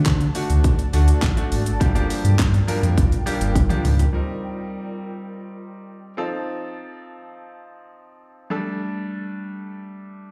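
Dance-pop at 103 BPM in G minor, energetic and driving, opens with a present, bright grand piano with audible action noise and slapback echo and a mellow, detuned ethereal pad with ensemble chorus sitting in the background, joined a moment later by a punchy, layered electronic pop drum kit (fat snare, handclaps, shaker, toms and warm hats) up front beside a deep sine sub bass with octave that pumps under sidechain. A drum fill at 3.6 s closes that opening, and the piano then carries on alone over Cm7, F7 and Gsus2 until 10.3 s, all heard as a live gig through the venue's PA with club reverb.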